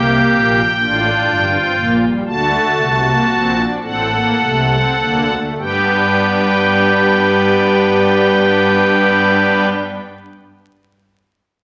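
Vinyl crackle sits over a wet recital hall reverb with a 1.4-second decay, framing this short cut from a longer piece. It is a serious, solemn baroque-style four-part fugue for solo pipe organ, voiced on string stops with a celeste that lends a shimmering, soft and romantic colour, placed up front and spanning G1 to A5. The pulse moves in a slow 12/8 at 32-44 BPM counted in dotted quarters, with a straight feel, and the opening passage slows down through its first 5.6 seconds. The harmony moves from G minor to D7 at 2.3 seconds, then brightens to G major as the second section begins at 5.6 seconds. The organ sounds until 9.7 seconds.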